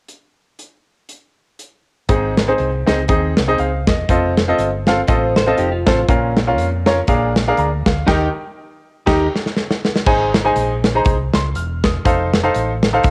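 A home cassette recording with moderate spring reverb carries this jubilant, hopeful uptempo gospel cut in Ab major at 120 BPM with a swung feel, where an up-front acoustic kit with a tight kick opens alone before a bright, brilliant grand piano and a dark, round hollow-body fingered bass enter at 2.1 seconds, a twangy, clean twelve-string electric guitar adds a picked second line from 5.1 to 9.3 seconds, and a band accent and drum fill lift the passage from Eb back to Ab.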